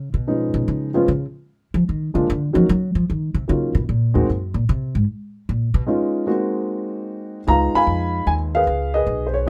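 This jazz piano trio piece moves in a swung three-four lilt, warm and playful in mood, and is cut from a longer performance. The upright bass opens the piece and carries a plucked solo through 7.5 seconds, its steel strings giving a woody, thumpy voice that sits up front. A dark upright piano enters at 0.3 seconds with the melody, mellow and intimate, with the soft clatter of its action audible beneath a smooth, vintage tone. The harmony circles dominant-seventh colours, passing through Ebm7 and a few rootless voicings before settling on Db7 as a new section begins at 7.5 seconds. A moderate small-room reverb and a rough home-demo mix give the recording a close, informal feel.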